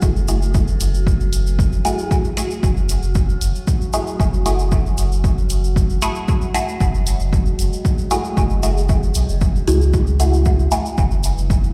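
A steady, straight 4/4 pulse at 115 BPM drives this deep, meditative dub techno passage in F# minor, cut from a longer piece and resting on a single F#m9 chord. A punchy, overdriven analog kick sits up front, joined at 0.3 seconds by dark, layered electronic hi-hats that sit in the background with a small-room character. A grainy, bright tube shaker sounds close and dry. Beneath them, a round, soft sub bass of triangle and square tones pumps with the sidechain up front. A muted, nasal, detuned sawtooth chord stab carries phaser, cassette tape grit, sidechain pumping and dub echo under a continuous filter sweep, and it stops at 10.8 seconds. An eerie, metallic FM drone with a slow attack and long release hovers with chorus, phaser and its own reverb, while the whole mix sits in a big, bare room with large studio reverb.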